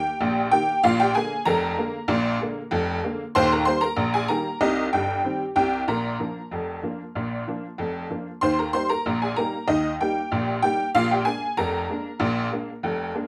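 A straight 2/4 pulse at 95 BPM drives this lively, jaunty ragtime piano passage in Eb major, cut from a longer piece and tuned slightly low to A4 = 438 Hz. A detuned, jangly honky-tonk upright piano plays solo across the full 13.3 seconds, spanning Eb1 to C6 and sitting up front in a moderate club reverb. Its harmony moves between Eb, Bb7, Cm and Bb, with a vintage, bright character throughout.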